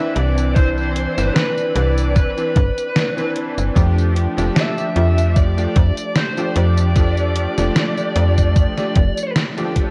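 A bluesy overdriven lead guitar opens this nostalgic, woozy vaporwave excerpt, its dark, distorted picked melody trailing tape echo over a bright, clangy electric grand piano thickened by ensemble chorus and a very quiet, silky string machine holding slow-blooming chords. At 75 BPM in 4/4 with a light 16th-note swing and a slightly flat tuning, the groove settles in as a snappy, metallic FM bass arrives at 0.2 seconds, up front in the mix. A detuned 8-bit drum machine joins at the same moment, its hi-hat, medium-tuned snare and tambourine soaked in gated reverb, and a thumpy electronic kick drum lands at 0.6 seconds. The harmony drifts from Cmaj9 to F69, the piano's long sustain and chorused vintage tone blending with the mellow pads beneath the guitar line. The guitar drops out at 9.3 seconds, just before a brief band accent closes the passage, and the whole excerpt carries a cassette-tape haze with light reverb.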